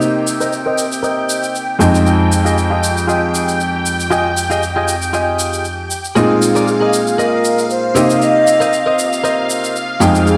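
A clear, slightly worn grand piano with short sustain sits up front from the first moment, laying down accompaniment with a touch of delay in this sensual, cosmic nu-disco excerpt in F minor at 117 BPM, with a gentle 16th-note swing. Around it, a lush vintage string machine holds sustained chords high in its range, its sawtooth tone thickened by phaser and ensemble chorus, while a bright, twangy direct-recorded clean guitar picks a compressed riff through subtle chorus, delay and a low-pass filter that sweeps across the whole passage. An electronic, layered shaker adds overdriven grit, set back in studio reverb. At 6.2 seconds a mellow, hollow silver flute enters with an airy, tongued melody and vibrato, lifted by delay and sitting slightly above the other parts in level. The harmony moves from Cm7 to Fm9, then Bb7sus4 and back to Cm7, and the whole mix carries a moderate plate reverb and the stony echo of a bare room heard through a big sound system.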